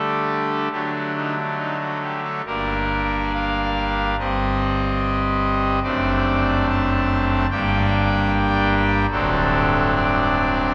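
A pipe organ plays alone on a brassy, bright trumpet stop with romantic voicing, sitting up front and spanning from D1 to A5 in a dark, grave chorale-style classical passage cut from a longer piece. The rubato pulse moves at roughly 66-76 BPM in 4/4, opening on Dsus4 and resolving to D before moving through G minor, C minor over G and D7 over F#, and ending on D7 at 9.1 seconds. A cathedral reverb with a 5.0-second decay surrounds the organ throughout the 10.7 seconds.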